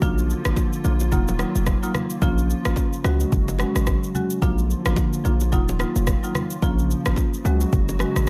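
Mellow and sultry, this afrobeats excerpt at 109 BPM swings lightly in 4/4 over a looping Bb to Ebmadd9, Bbm and Dbsus4 progression, with a woody, boxy marimba up front, a hollow, warbling flute-like pad under ensemble chorus, a punchy, heavy 808-style bass, an electronic afro-pop kit with deep kick, rim click and shaker, and bright, close congas and bongos in the background, all in a digital ambience.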